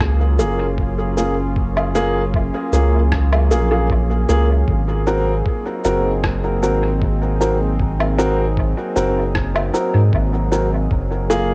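A muffled, thumpy electronic kick sets an unhurried straight 4/4 pulse at 77 BPM, together with a tape-softened patter of rim click, cabasa and woodblock that trails off into dub echo and studio reverb. This is peaceful, spacious ambient dub in Ab mixolydian, cut from a longer piece and drifting from Gbmaj9 to Ab9 before returning to Gbmaj9 at 10.9 seconds. Underneath, a soft, round sub bass sits up front with a touch of tube saturation, holding sustained low notes with a quick attack. A warbling, nostalgic pad of detuned sawtooth and triangle tones swells in slowly, its chorus and built-in reverb giving the chords a lo-fi, mellow haze. From 0.4 seconds a dark, woody upright piano places smooth, vintage-sounding stabs close to the listener, each one echoing away in dub fashion. The whole piece carries the light reverb and digital ambience of a home cassette recording.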